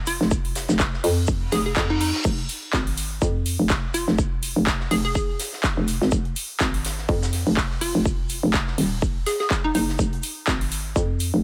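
Bouncy and swaggering, this bass house excerpt at 124 BPM in F phrygian, with a light 16th-note swing, rides on a punchy, knocking FM bass with overdrive and sidechain pumping, set up front alongside a layered electronic kick, while a detuned square-wave pluck with chorus and delay carries a hollow melody; a big-room dance kit adds handclaps, crash and metallic hats, a quieter acoustic rock kit contributes rolled-off hi-hat, shaker and snare, and a reverse cymbal sounds from 1.5 to 2.2 seconds in a dry mix.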